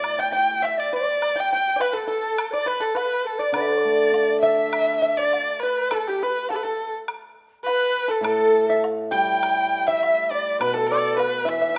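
In a straight 2/4 at 103 BPM, this festive, graceful Chinese chamber piece in the D zhi mode is led from the start by a rich, focused erhu from a single player, bowed up front with vibrato and portamento. A pure, buzzing bamboo dizi sits in the background and a mellow, percussive pipa played with fingerpicks shares the same upper register as second lines, while a close woodblock ticks underneath. A shimmering, ringing hammered dulcimer comes and goes in the low register, returning at 3.5 s and again at 8.2 s, all set in a dark, warm recital-hall reverb in this short cut from a longer piece.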